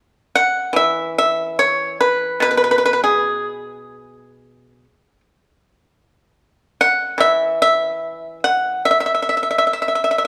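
A solo pipa, played with fingerpicks, carries this brief excerpt of Chinese traditional music, entering at 0.4 seconds and sounding until 10.3 seconds. Its tone is acoustic and warm yet dry and percussive, and it sits up front in the mix. The mood is serene and pastoral, unfolding in a rubato feel around 73 BPM in 4/4, set in an E gong mode with tuning at A4 = 438 Hz. The pipa ranges from B2 up to F#5. Light reverb and a small room ambience give the intimate performance a gentle sense of space.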